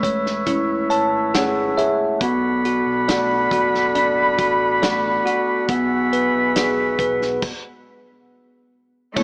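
A straight 4/4 pulse sets a heartfelt, tender pop ballad, carried by a natural country drum kit with a punchy kick, medium-tuned snare, hi-hat and crash cymbal in an acoustic small-room sound. A bell-like tine electric piano sits bright, clean and up front as the main accompaniment, adding a fill from 0.5 to 2.2 seconds, while a woodwind section holds tight, sustained chords with light vibrato in a classical style. In the background, a dark, thumb-plucked nylon-string guitar plays arpeggios through a digital delay, and a deep, full sine sub bass with an octave sits underneath. The harmony moves from Amaj7 to Bm7 and then to Eadd9/B, before the band stops from 7.4 to 9.2 seconds. At 9.2 seconds a chamber cello section enters with a nasal, reedy, gut-string period tone for a bowed second line. Moderate plate reverb and a small-speaker character give the cut from a longer piece an intimate, slightly boxed-in sound.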